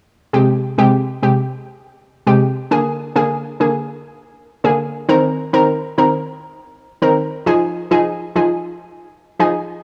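Sultry and tough, this dancehall excerpt moves at 101 BPM in a straight 4/4, built on an analog pluck that carries the accompaniment from 0.3 to 9.5 seconds through Abmaj7, Bb7, Cm7 and Fm7. The pluck is round and bright, blending detuned sawtooth and square waves with a noise layer, a filter sweep, a fast attack and a decaying tail, all thickened by chorus and sitting up front. The dry, gritty hardware sound carries a light reverb and a small-room ambience.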